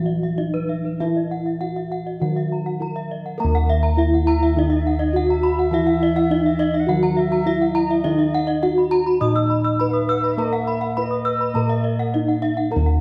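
In this shimmering, brilliant excerpt of Balinese gamelan in Eb pelog at 103 BPM, bronze metallophones ring out from the first second: a mellow, padded-mallet melody sits over a wooden-mallet accompaniment and round, up-front bossed gongs in the bass, while two horn-mallet metallophones spin high arpeggios whose paired tuning produces shimmering beats; a bright, reedy bansuri enters at 4.2 s as a distant, tongued second line, all set in a dark production with moderate recital-hall reverb.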